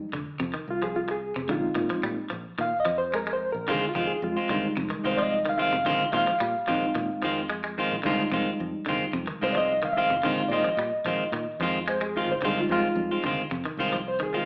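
A reedy electric piano with a fast tremolo sits up front and takes the solo across the whole clip, ranging from G3 to F5 over a hypnotic, defiant afrobeat groove in F dorian at 110 BPM in a straight 4/4. Beneath it, an electric guitar at the edge of break-up plays twangy, scooped arpeggios in a narrow low register, while a round, punchy fingered bass with a dark, foam-muted tone holds down the bottom. A clean, picked electric guitar enters at 3.7 seconds with up-front stabs. The harmony sways between Fm7 and Bb9sus4 throughout. The band sounds like it is playing live in one room, bathed in a wet large studio reverb and filtered through an AM radio character, and the clip is cut from a longer piece.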